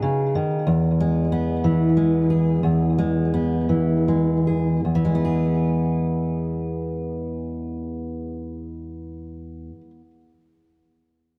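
Hopeful and anthemic, this brief folk excerpt in E major and a straight 6/8 features a lone fingerpicked steel-string acoustic guitar, full-bodied and up front with audible finger squeak, ranging from E2 to G#4 through a tape echo in a light reverb, as a chordless opening gives way to an E chord at 0.7 seconds, slowing down until 4.8 seconds before a second section carries through to 9.6 seconds at roughly 50 to 63 BPM.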